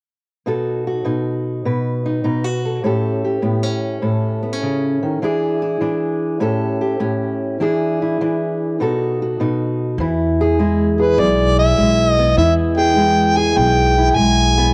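This is a short cut from a longer acoustic country blues piece, soulful and gritty, moving at an easy swung walk in four. A fingerpicked steel-string acoustic guitar opens alone at 0.5 seconds, its warm, up-front tone carrying the accompaniment through a run of seventh chords from B7 through A7 and E7. At 10.0 seconds the harmony settles on E and a pizzicato upright bass enters, woody and thumpy down low. A second later, at 11.0 seconds, a clear harmonica takes the lead, sitting up front with a soft attack, light vibrato and a jazz-tinged phrasing. Moderate spring reverb and the grain of a home cassette recording give the whole a close, rough-edged intimacy.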